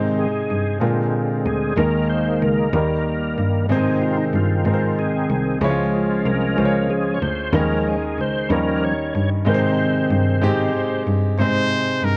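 Jubilant yet reverent, this slow gospel excerpt in 6/8 opens with a reedy, clean tonewheel organ leading through fast rotary swirl and chorus vibrato, its key click audible, while a brilliant concert grand piano with deep bass supplies accompaniment and a single bowed cello, nasal and biting with an airy tone, carries the bass line. The organ's featured passage runs until 11.4 seconds, where a present, pop-style trumpet with vibrato takes up the melody through to the cut at 12.2 seconds. The sound is dry and close, in the manner of a 1970s studio recording, with the organ, piano and trumpet placed up front.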